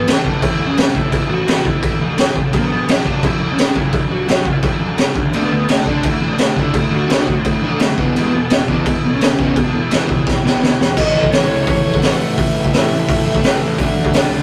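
Punk rock excerpt, energetic and rebellious, where an up-front, gritty garage drum kit with a boomy kick and high-tuned snare drives a dark, high-gain distorted lead guitar melody, a biting overdriven rhythm guitar that sounds only briefly at the start and then returns at 5.3 seconds, a very quiet raw garage guitar riff and a growly fuzz-laden bass, all captured in a rough rehearsal-room sound with tube saturation and light reverb, and a drum fill at 10.3 seconds leads into a new section.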